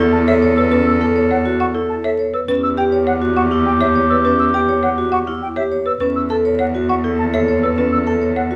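A rich, bowed cello holds a low E2 beneath a woody, hard-mallet marimba melody, a clear clarinet second line and ringing, metallic vibraphone arpeggios, joined at 0.1 seconds by pure, expressive flute arpeggios with vibrato, in this urgent yet meditative minimalist classical pattern music at 102 BPM in 3/4, moving from A/E through Emadd9 to Aadd9/E, heard from further back in a wet large-studio reverb with vinyl crackle, in a short cut from a longer piece.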